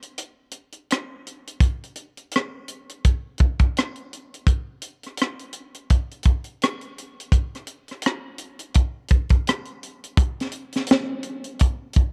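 R&B groove at 84 BPM in 4/4 with a light 16th-note swing, carrying an introspective, sultry mood through this brief cut from a longer piece. A tight funk drum kit plays throughout, with hi-hat, kick, rim click and a high-tuned snare sitting up front, mid-forward and rolled off on top, with a small-room character. The sound is dry and close in a 1970s studio style, and the groove shifts into a new section at 10.2 seconds.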